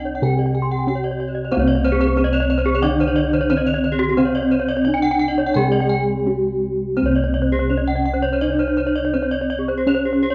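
Bathed in a moderate spring reverb, this shimmering, brilliant fragment of Balinese gamelan in C pelog moves at 83-93 BPM in a straight 4/4, with a mellow, dark bronze metallophone carrying the melody on padded mallets, two airy, horn-struck metallophones ringing out high arpeggios, and round, beating bossed gongs holding the bass up front in a boxy small room, while a mid-forward, wooden-mallet metallophone adds low accompaniment from 1.5 s to 7.0 s, as a break at 5.9 s gives way to a new section at 7.0 s, every paired-tuned bronze part pulsing with shimmering beats.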